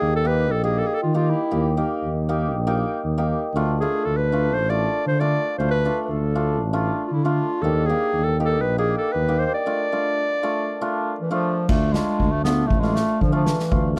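A warm clarinet carries the melody from the first moment, with a mellow tuba holding down the bass beneath it, its tone touched by light vibrato. The hammered dulcimer joins almost at once in accompaniment, its bright, shimmering strokes ringing close up in the mix. This is a soulful, festive klezmer piece at 118 BPM in a straight 4/4, with the harmony moving between Eb and Dm. After a break starting at 9.7 seconds, a street-band drum kit enters at 11.7 seconds with crash cymbal, boomy kick and a medium-tuned snare, its dark cymbals sounding airy and polished in a big room. The recording is dry and close, in a 1970s studio style, and this short section is cut from a longer piece.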